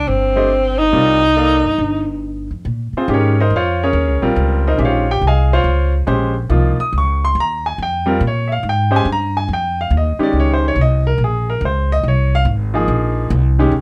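This modal jazz fragment, cut from a longer piece, has a searching, spiritual mood and a swung 4/4 feel. A breathy tenor saxophone opens the melody in a whispered subtone, with soft attacks, scooped notes and gentle vibrato, set back in a plate reverb, but it drops out at 2.2 seconds. A pizzicato upright bass on gut strings gives a woody, thumpy foundation and carries on through the whole passage. A clear, natural-sounding grand piano enters at 0.4 seconds and accompanies across a broad register. The harmony moves from Cm9 to Bbm11 at 2.7 seconds, and the rest unfolds over that second chord in a light room reverb.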